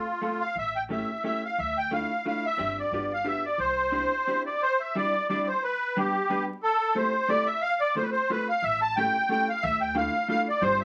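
A lilting, swung triple-time waltz with a rubato give, this short musette piece whirls along in a nostalgic mood, carried by a reedy, shimmering, band-limited accordion melody up front. A dark, clean hollow-body electric jazz guitar with a picked, compressed tone accompanies throughout, while a woody, growly pizzicato upright bass sits low in the mix, playing from 0.6 to 4.0 seconds and again from 8.6 seconds. A moderate studio reverb and a layer of vinyl crackle give the sound a vintage patina as two passes of the same theme cycle through chords such as A7 and Dmadd9.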